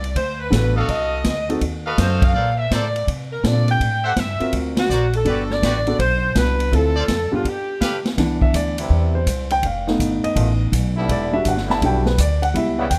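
A clear, vibrato-laden saxophone section carries the melody over a woody, thumpy upright bass and a punchy, natural-sounding drum kit with hi-hat, kick, snare and ride, while an intimate grand piano with audible action noise comps beneath and a bright trumpet section adds stabs, with band accents punctuating this energetic, joyful big band swing cut from a longer piece. After a brief break, the piano takes a solo from 8.2 seconds, joined at 8.8 seconds by a trombone section holding sustained chords with light vibrato. The recording sits close and detailed in a lightly reverberant studio room.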